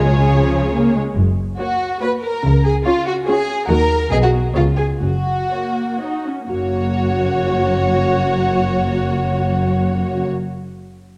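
A dark, reverberant scoring-stage sound frames this mischievous, whimsical film cue in a lilting triple metre, taken from a longer piece. A smooth violin section carries the high melody over a warm, woody folk marimba sitting dry in the background, while a second, up-front violin section sings an expressive line with soft attacks and vibrato. Shadowy violas glide with portamento beneath, and a close cello section and a focused, rich double bass section anchor the low end as the music slows between 3.1 and 6.5 seconds before a new section begins.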